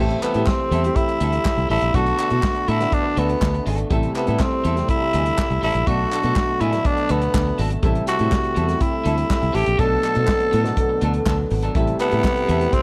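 Glamorous, driving disco at 122 BPM in A dorian, where a raspy, growling tenor saxophone carries the melody up front over a round, foam-muted fingered bass and a dry, punchy soul drum kit. Alternating Am7 and Bm7 chords come from a slightly broken-up, scooped electric guitar, a worn grand piano with audible action noise and a distant, roomy French horn section with light vibrato, while hollow group handclaps sit in the background of a small room.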